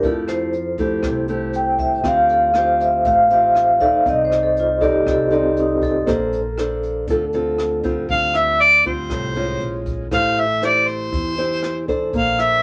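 A straight bossa nova groove in 4/4 sets a wistful, smooth mood in this passage cut from a longer piece. A jazz brush drum kit keeps time with hi-hat, a punchy kick and rim click, its brushed sound dark with a rolled-off top, while a pizzicato upright bass sits low and quiet with a woody, growly tone. Up front, a fingerpicked nylon-string guitar on fresh strings plays warm accompaniment, its finger squeak audible. The vibraphone with medium mallets leads the opening section, ringing and metallic with a fast motor vibrato, until it stops at 7.1 s. At 8.1 s a mellow harmonica takes the melody up front, its soft attack, scooped notes and light vibrato giving it a vintage jazz character, all set in a moderate small-room reverb.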